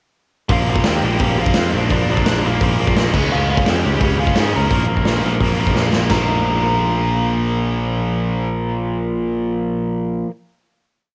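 A straight, fast punk groove at 171 BPM in 4/4 drives this rowdy, energetic punk rock piece. A gritty, saturated garage drum kit sits up front in a pumping stone room, with a punchy kick, a medium-tuned snare and china, crash and hi-hat, until a fill at 5.8 seconds and its stop at 6.2 seconds. Double-tracked overdriven guitar drives eighth-note power chords over Bb and Db, a growly picked bass pushes eighth notes beneath, and a lo-fi lead guitar plays a motif-based melody in period phrases, partly doubled in octaves, before the guitars and bass hold a final chord to about 10 seconds, with the guitars and drums carrying a cassette-tape colour in a small home-recorded room.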